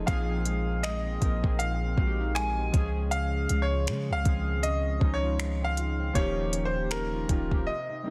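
A swung sixteenth-note groove from an up-front electronic R&B kit of finger snaps, smooth hi-hat and soft kick, with soft clipping on the snare, drives this late-night, sensual contemporary R&B excerpt, as a deep, boomy 808-style bass and round, detuned analog keys with chorus support a brilliant concert grand piano melody trailed by tape echo over Bb9sus4, Dbmaj7 and Eb9 chords, a dark thumb-plucked flamenco guitar arpeggiating in the background, until the drums and bass drop out for a brief break at 7.7 seconds.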